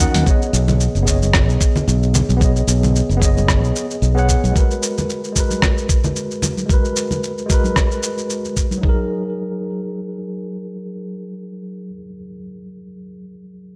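A swung sixteenth-note groove of gritty, compressed sampler-style hi-hat, rim click and shaker over a thumpy electronic kick, with thin-skinned congas in the background, carries this smooth sunset chillout fragment through chords moving from B69 to G#m9 to F#69. A bright, up-front fingered electric bass drops out at 4.5 s, and the drums and congas fall away by 9.0 s. A worn, slightly out-of-tune tine electric piano, lightly overdriven with delay, then plays on alone until 13.8 s, all set in a light digital ambience.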